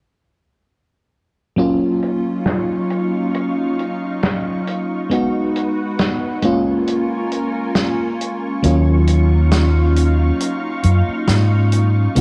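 A light reverb and cassette tape grain give this melancholic, nostalgic vaporwave fragment, cut from a longer piece, a faded, dreamy quality. From 1.6 seconds an FM electric piano layered with a soft pad carries the accompaniment up front, its lush, detuned tone shimmering through tremolo, chorus, a tape tint and an analog delay. Alongside it a silky, vintage string machine holds long, warbling chords with a slow attack and an ensemble chorus. A natural country drum kit plays hi-hat and snare with a gently swung sixteenth-note feel, its small-room sound muffled by low-pass filtering and a filter sweep across the whole passage. At 8.6 seconds a round, dark fingered electric bass joins up front, and the harmony drifts from Ebm9 through Db9sus4 and Bbm7 back to Ebm9 before the fragment ends at 12.2 seconds.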